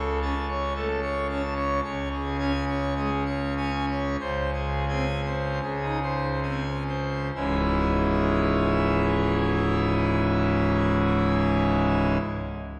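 A full pipe organ dominates this stormy, majestic classical toccata, playing solo from 0.0 to 12.2 s in C# minor, tuned to A4 = 441 Hz. Its brilliant mixtures and romantic voicing sit up front, spanning from C#1 up to A5. The pulse is a straight 4/4 with tempo moving between 62 and 112 BPM, slowing from 0.8 s until 7.3 s. Harmony moves from A/C# through a bare C#5 and G#/C# before settling on C# minor as a new section begins at 7.3 s. A long church reverb of 2.9 seconds surrounds the instrument, heard from further back in the room, and the passage is cut from a longer piece.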